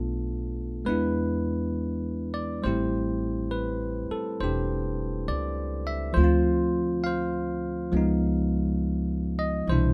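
This short excerpt opens with a bell-like tine electric piano, bright and clean, and a woody, thumpy upright bass, both up front and playing together from the start. The jazz ballad moves at 68 BPM in a swung 4/4 in A minor, with a late-night, intimate mood under light reverb. The harmony begins with Bm7b5 and E7, then settles onto Am7 at 2.6 seconds before passing through Dm7 to C#9.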